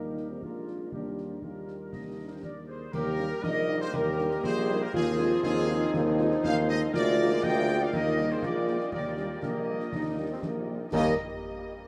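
A festive, proud military-style march for wind band in Eb major at 120 BPM in a straight 2/4, cut from a longer piece, with a warm trumpet section carrying the melody over a mellow woodwind section, a present euphonium in the background and a dark, very quiet French horn section, all resting on an up-front but roomy tuba bass and close concert snare, bass drum and dark clash cymbals from 0.2 seconds, while an airy, hollow flute section joins at 2.4 seconds and soft trombone chords arrive at 2.9 seconds, the whole band washed in a huge, echoing reverb.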